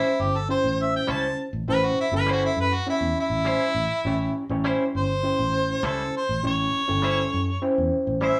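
A blues excerpt cut from a longer piece, gritty and soulful, moving at 101 BPM in a straight 4/4 in A mixolydian over an A7#9 chord. A clear, overdriven harmonica takes the solo up front for the full 8.4 seconds, its light vibrato and scooped notes sitting over a smooth top in a pop-styled delivery. Beneath it, a reedy electric piano played through a combo amp adds gritty accompaniment with a fast tremolo. A bright, twangy clean electric guitar, recorded direct and compressed, punctuates throughout with picked stabs close to the front. A fingered electric bass enters at 0.2 seconds with a round, foam-muted tone, and the band sounds as if playing live together in one room with a short, wet studio ambience.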